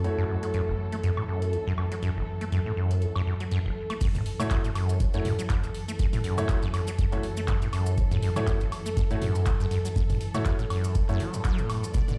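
Hypnotic and gritty, this acid house fragment, cut from a longer piece, moves at 121 BPM in 4/4 with a 16th-note swing, resting on an F#m7 chord in F# minor. A squelchy, resonant sawtooth acid bass drives the riff up front, its saturated filter plucks decaying through tube saturation and tape echo. Beneath it, a studio string section holds smooth, bowed chords with vibrato, pumped by sidechain and darkened by a low-pass filter, while a brilliant grand piano adds intimate stabs with audible action noise and long sustain, also sent through tape echo. An analog drum machine supplies metallic hi-hats, handclaps, toms, woodblock and crash cymbal from the start, and at 4.0 seconds the drop lands with a deep, tape-warm electronic kick pushed forward and grainy maracas tucked in the background. Light digital ambience sits over the mix, which sounds as though played on a big sound system in a bare stone room.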